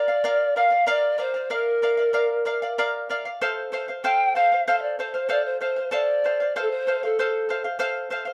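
A wet studio reverb frames this brief, wistful yet festive Andean folk passage at 95 BPM in 4/4, where an airy, woody pan flute with soft attacks, gentle vibrato and rolled-off highs carries the melody up front until 7.7 seconds, while a bright, shimmering charango with fingerpicked double strings, some doubled at the octave, accompanies over a move from Bb to F at 3.4 seconds and rings on alone to 8.3 seconds.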